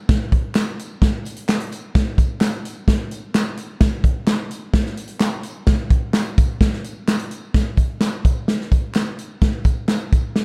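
A straight 4/4 groove at 129 BPM drives this danceable, joyful soul excerpt, where an up-front acoustic drum kit with hi-hat, a punchy kick and a medium-tuned snare sits in a natural studio room, while softer tambourine, egg shaker and group handclaps sound distant in a large room, all under light reverb and a dark production, with a new section arriving at 7.5 seconds.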